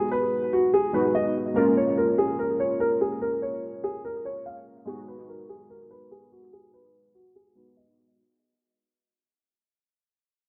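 A half-time hip hop groove at 145 BPM in 4/4 sets an ominous, tense mood in this short fragment of a longer piece. A dark, boxy concert grand piano carries the melody up front through low-pass filtering and tape echo, while warbling, detuned lo-fi synth keys with chorus and a nostalgic sub-octave glow supply the accompaniment over Abm7 and Bbm7. The echo-heavy mix sits in a small room with light reverb, and a filter sweep and fade-out run across the full 8.2 seconds.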